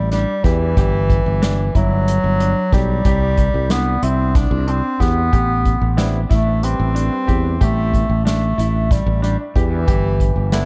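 Intricate and tense, this short cut from a longer progressive instrumental moves in 7/8 at 184 BPM in eighths, with a clear, roomy bass clarinet carrying the melody up front through tape echo, a growly fretless electric bass, an airy unplugged drum kit played with bundle sticks, a smooth grand piano tracing arpeggios in the background, and a barky tine electric piano joining at 6.0 seconds, all over a chord path from A5 through G6, C and Am7 in an echo-heavy mix with light reverb.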